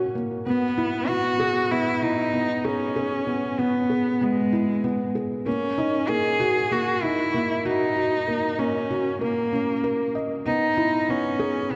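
A boxy, up-front bowed cello with smooth vibrato carries the melody in this moving, cinematic electronica excerpt at 96 BPM, over a mellow, felt-muted upright piano riff with audible action noise, short sustain and delay, both playing throughout the 11.8 seconds as the harmony moves from a rootless C#m7 to D#m7 and back, tuned to A4 = 441 Hz and set in a wet concert hall reverb with a dark production.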